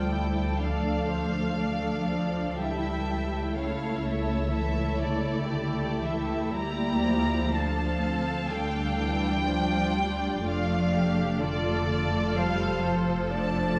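From the first moment, a slow, rubato classical movement for string orchestra in D minor at 62 BPM unfolds with yearning melancholy: a rich, distant violin section carries the melody over a close second violin line, while dark, expressive violas, woody cellos in the background and up-front double basses with portamento fill out the lush, bowed sound in a reverberant recital hall.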